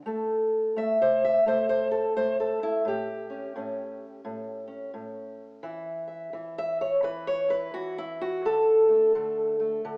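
Acoustic country blues with a swaggering, rollicking swing at 86 BPM in A mixolydian, this short cut from a longer piece features a solo fingerpicked old ladder-braced acoustic guitar, dark, woody and boxy with old strings, sitting up front in a wet recital-hall reverb with a small-speaker sound, moving from A7 to a chordless passage at 5.6 seconds before landing on D5 at 8.4 seconds.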